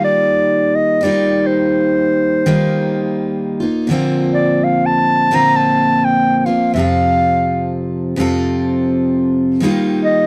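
Acoustic folk in Bb major at 84 BPM with a gentle swing, this nostalgic 10.3-second cut from a longer piece places a mellow, soft-attacked, classical-style clarinet melody up front over a bright, full-bodied picked jumbo steel-string guitar with fresh strings, moving through Ebadd9, Bbadd9 and F chords in a dry, close 1970s-style studio sound with small room ambience.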